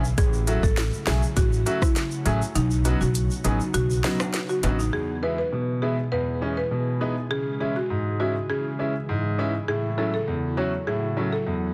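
A clear, intimate concert grand piano with audible action noise and long sustain underpins this summery, sunny dancehall cut in E major at 101 BPM, while a buzzing, dry marimba with hardwood bars plays a band-limited melody through tape echo. Up front, a woody, dark pizzicato upright bass and an electronic afro-pop kit with a sharp snare and smooth hats join a vintage egg shaker and timbales, with the deep kick dropping out at 2.6 seconds and the whole groove stopping at 4.9 seconds. An ethereal, detuned pad with ensemble chorus and sidechain pumping hovers mellow in the background through the A6, Badd9, E and C#m changes, in a small room with light reverb and a dense, heavily limited master.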